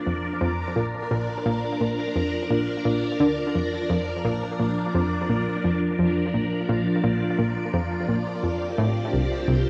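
Cosmic and luminous, this ambient, sequencer-driven space music moves at 86 BPM in a straight 4/4, rooted in Bb major and cut from a longer piece. A phased string machine holds sustained chords from the very start, its swirling, vintage sawtooth tone softened by a gentle attack and colored by ensemble chorus and phaser. Almost at once an analog pluck enters at 0.1 s with a low riff, a round, detuned blend of sawtooth and square wave reinforced by a sub octave, with a fast attack, short filtered decay, chorus and delay. Both parts sit bright and up front in the mix. The harmony rests on Bb before shifting to Fsus2 at 8.4 s, and the whole passage unfolds as a single section lasting 9.7 s. A wet small-room reverb and the soft grain of a home cassette recording lend the sound an intimate, homemade glow.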